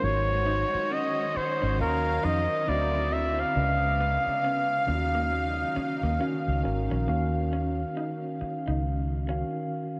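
R&B at a slow, swung 68 BPM with a sultry, late-night mood, this cut from a longer piece sets an up-front flugelhorn melody with light vibrato and scooped notes, trailed by diffuse ambient delay until 6.6 s, over mellow tine electric piano, lush bowed strings holding chords until 7.1 s, a dark, round, foam-muted fingered bass, and a slightly broken-up, lo-fi electric guitar line in the background from 0.5 s, the mix soaked in a huge, dreamy reverb across chords such as Ab7sus4, Ebm9 and D9.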